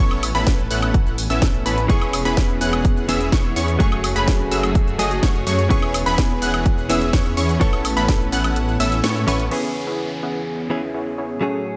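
Uplifting and anthemic, this festival progressive house excerpt at 126 BPM in E major opens mid-drop with a punchy, up-front kick, a house kit with a cracking snare, hi-hat, shaker, woodblock and crash, a thick, menacing detuned saw bass, a sidechain-pumped supersaw stab riff, lush high unison pluck arpeggios with tape colour and delay, and faint, floating chamber strings, while a clean, direct-recorded electric guitar joins at 1.9 s, the kick drops out at 8.6 s ahead of a band accent at 9.0 s, and from 9.5 s filter sweeps on the supersaw and strings sound alongside a soft downlifter through light digital ambience.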